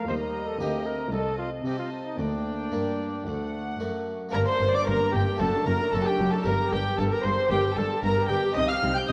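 A driving, dramatic baroque-style concerto passage, cut from a longer piece, opens with a classical-style solo trumpet and a close, reedy gut-string violin section sharing the melody over a rich, smooth-topped second violin line, a dark, distant viola section, an airy, full harpsichord in the background and a warm bowed cello bass, with a double bass section joining at 4.3 seconds, heard in a moderate concert hall through worn, warbly cassette tape with pitch drift.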